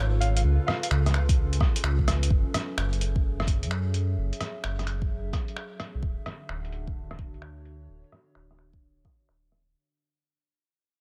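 A warbling, grit-flecked tape pad pumps against a dark, rumbling detuned saw bass and a faint glassy shimmer of drifting overtones to open this melancholic, nocturnal future garage excerpt at 129 BPM in F# minor with a swung 16th-note feel, as a brief mellow alto saxophone phrase with subtone, vibrato and digital delay floats over muffled, pitched-down sampler drums of finger snaps, hi-hat and rim click, a deep up-front electronic kick arrives at 1.3 seconds, and from 2.3 seconds filter sweeps on the drums and bass accompany a fade-out across chords moving from C#7b13 through F#m9 to Dmaj7.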